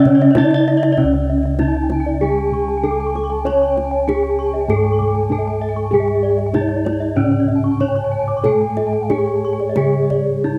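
Shimmering and brilliant, this short cut from a longer Balinese gamelan piece in C# pelog moves at 97 BPM in 4/4 with uneven beats, as a horn-mallet bronze metallophone carries the up-front melody over a dry, background metallophone accompaniment, two ringing metallophones spin high arpeggios with the beating shimmer of paired tuning, round bossed gongs struck with padded beaters hold the bass, a tight kendang taps softly by hand, and from 2.2 seconds an airy bass bansuri with vibrato adds a second line, all caught on a home cassette recording with a boxy small-room ambience and light reverb.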